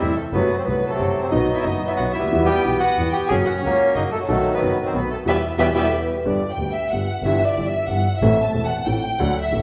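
A rubato 3/4 tango at 183 BPM, this melancholic, sultry fragment has a reedy, up-front bandoneon carrying the melody until 5.9 s over a lush, vibrato-rich violin section, a dark, mellow grand piano with long sustain and a bowed, sul tasto double bass, while a ringing soft-mallet vibraphone glints in the background from 5.6 s amid a band accent, before the violins take a solo at 6.3 s as the key shifts from E harmonic minor to G major, all in a recital hall's reverberant space.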